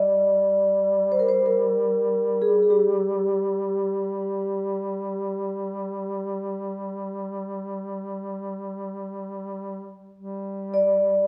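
A vibraphone played with medium mallets, motor off, carries a dark, ringing melody up front while a mellow duduk holds a distant, vibrato-tinged drone beneath it in this solemn, longing Caucasian folk lament, a fragment of a longer piece set in a moderate recital-hall reverb.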